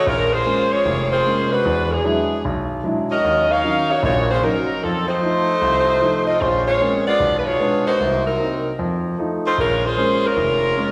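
A swinging 4/4 pulse at 151 BPM drives this sultry jazz passage in B-flat minor, cut from a longer piece. A saxophone section carries the melody, its warm, ensemble blend shaped by vibrato and a soft attack, sitting up front from the very start. A clear grand piano enters at 0.1 seconds as accompaniment, intimate and natural, with its action noise audible close up. The harmony moves from Bbm7 through E9, Ebm7 and F7, then slides through Bbm9, Bdim7 and Cm7b5 back to F7 before resolving to Bbm7 at 9.6 seconds. A lush recital-hall reverb with a 1.7-second decay surrounds both parts, giving the sound the spacious glow of a church or concert hall.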